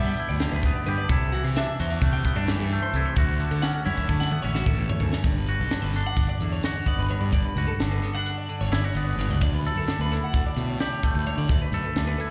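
Intricate and bright, this short cut from a longer math rock and midwest emo piece moves at 259 BPM counted in eighths, in a straight 9/8. A twangy electric guitar carries the accompaniment through spring reverb and slapback echo, while a twelve-string electric guitar sets clean, compressed, bright arpeggios higher up, washed in the same reverb and echo. Underneath, a fingered electric bass growls with dark, round fuzz from its overdrive, sitting up front alongside a crisp fusion drum kit, which enters at 0.2 seconds with a high-tuned snare and punchy kick. The chords pass from G6 through C69 and Dmaj7, and a drum fill from 3.9 to 5.3 seconds leads into a second section built on Gmaj7 and A7sus4. The whole performance sounds like a live gig heard through the venue's PA, softened by a recital-hall reverb and a dulled top end.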